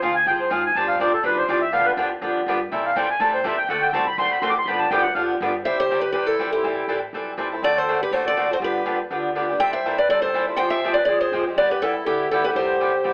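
A reedy, mid-forward accordion with a slow beating shimmer takes a solo over the first 5.6 seconds of this charming, lively acoustic string swing excerpt at 244 BPM in C major. It is backed by a boxy, freshly strung swing guitar and a woody pizzicato upright bass sitting low in the mix. At 5.7 seconds a bright, up-front parlour steel-string guitar picks out the melody while the accordion continues as a second line through chords such as Am7, D7 and G7 before landing on Cmaj7, all heard through a thin telephone-like tone and a moderate studio reverb.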